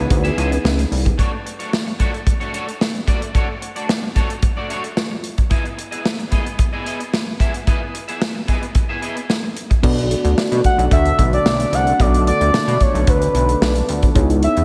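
A short burst of the full band opens this funky, slick early-eighties boogie funk piece at 111 BPM in B dorian. That opening gathers a smooth, wave-folded synth lead with vibrato and chorus, a mellow tine electric piano in the background, a very quiet, warbling analog pad, and a glossy, chorused synth bass placed up front. Moments later those parts drop away, leaving a punchy modern studio drum kit with bright cymbals and a twangy, slightly broken-up electric guitar riff bathed in ensemble chorus, while the harmony moves from Dmaj7/A to Emaj7/B. Around 9.7 seconds the guitar falls silent, and at 9.8 seconds the bass, electric piano and pad return over a Bm7, with the expressive lead rejoining at 10.7 seconds, trailing into a diffuse ambient delay. The whole mix is soaked in lush hall reverb, giving the groove a dreamy sheen.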